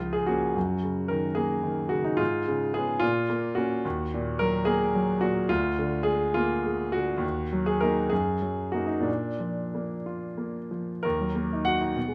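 Bittersweet and stormy, this romantic character piece for solo piano moves in a rubato 6/8 at roughly 59-76 BPM, counted in dotted quarters, opening in B-flat minor before settling into E-flat minor at 3.8 seconds. The grand piano sounds smooth and vintage, placed up front with a touch of reverb, and spans Db2 to Gb5 as chords pass through Gb6, Bb7/D and a Bb major chord before the music returns to E-flat minor. A new section begins at 11.0 seconds, just before this passage, cut from a longer piece, breaks off at 12.1 seconds.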